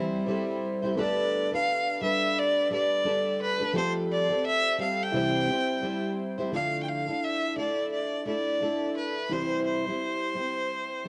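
A cozy home cassette recording in a small, lightly reverberant booth captures this sunny, easy-going acoustic pop fragment, cut from a longer piece, with a gentle swung sixteenth feel in 4/4. A close, bowed cello with vibrato opens for under a second before a smooth, up-front violin takes the melody at 1.0 s, its rich tone carried on tape and plate reverb. Underneath, a double-tracked fingerpicked steel-string acoustic guitar sits warm and forward, while a very quiet, dark upright piano adds woody, worn, slightly detuned accompaniment with audible action noise. The harmony moves from C through Gadd9 and Fadd9 back to C, then on to Dmadd9 before settling home on C.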